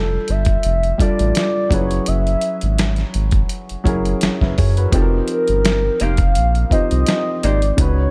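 A mellow, horn-like synth lead with a soft attack, chorus and phaser carries the melody over an intimate, woody upright piano with audible action noise and a deep, round analog bass, opening this soulful, late-night neo-soul and R&B excerpt built on sus4 ninth chords. Gritty, compressed boom bap drums with a thumpy kick and a medium-tuned snare enter at 0.3 seconds with a lightly swung sixteenth feel, sitting up front beside the bass. At 6.0 seconds a clean, dark hollow-body jazz guitar adds a picked second line until 7.6 seconds, all within light digital reverb and a dusky production.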